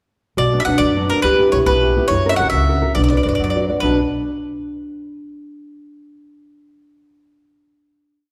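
Italian folk serenade in a straight 6/8, passionate and romantic, heard as a complete miniature piece. An up-front mandolin carries the motif-based melody in balanced period phrases, its picked double strings round and warm. Beneath it a buzzing kalimba adds a soft, woody counter-melody, its short fingertip plucks dark and hollow. A small, thumb-plucked nylon-string guitar supplies an oompah accompaniment of bass notes and chord figures, while a growly, thumpy pizzicato upright bass on steel strings plays root and fifth on the main beats. All four parts enter together at 0.4 seconds and move through Bm, Em and F# back to Bm, reaching a final chord at 3.8 seconds, and the recording sits in a wet recital-hall reverb with the bloom of a church or concert hall.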